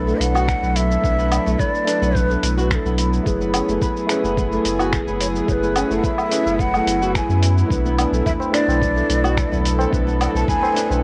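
Heard through the soft haze of a home cassette recording in a lightly reverberant space, this mystical, earthy organic downtempo excerpt from a longer piece moves in a straight four. A breathy, end-blown reed-cane ney carries the melody with expressive vibrato and tongued phrasing, its lines trailed by tape echo and a shimmer reverb. Beneath it, a clean tine electric piano heard through its built-in speakers and a dark, floating string section bowed sul tasto share the harmony, both breathing with sidechain pumping as the chords shift from Bm7 to F#m11 and back. A round, deep sine sub bass sits up front, while a fingerpicked flamenco guitar adds arpeggios dressed in the same echo and shimmer. The rhythm comes from a gritty, overdriven sampler-style kit of cabasa, finger snaps, hi-hat and woodblock, anchored by a thumpy, compressed electronic kick. At 8.3 seconds, a low-tuned tabla with a short ring joins quietly in the background.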